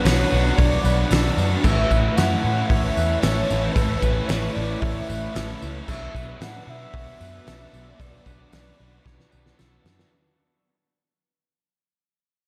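A mellow, horn-like synth lead with chorus, vibrato and tape echo sings a dreamy, blissful melody over Bm and Aadd9 in this 113 BPM shoegaze and dream pop rock excerpt, carried by background string-machine violas, a bright twangy clean guitar with tape echo, a biting overdriven guitar riff through reverse reverb, a crunchy overdriven guitar with lush chorus, a round, foam-muted vintage bass and a jingly tambourine, while a loose indie drum kit with a fat snare, punchy kick and dark cymbals plays up front and adds a fill at 9.1 s as the whole reverb-soaked hall mix fades out.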